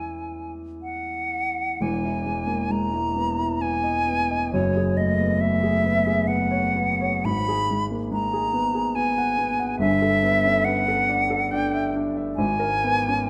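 In a rubato three-beat lilt, this pastoral, dreamy impressionist duo drifts by in a short passage cut from a longer classical piece, with a silver concert flute carrying the melody in a pure, metallic tone with vibrato and a soft attack. A dark grand piano, mellow and smooth with a vintage character and long sustain, accompanies it throughout, moving from an E6 opening to an Emaj7 at 1.8 seconds as the music settles into a new section. Both instruments sit up front within a moderate recital hall reverb as harmonies such as F#m11, G69 and G#madd9 colour the rest of the passage.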